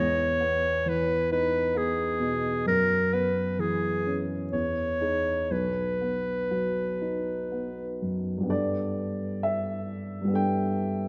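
A moderate concert-hall reverb surrounds this dreamy, luminous fragment of an impressionist classical duo in B major, moving in a rubato 3/4 at around 59-68 BPM. A bright, classical-style clarinet sings the solo melody up front over a dark, mellow baby grand piano with a vintage character and long sustain, its chords drifting from Emaj7 through F#7sus4 to B. The clarinet falls silent at 8.0 seconds, leaving the piano alone to turn toward a Gadd9 at 8.5 seconds before the passage breaks off at 11.1 seconds.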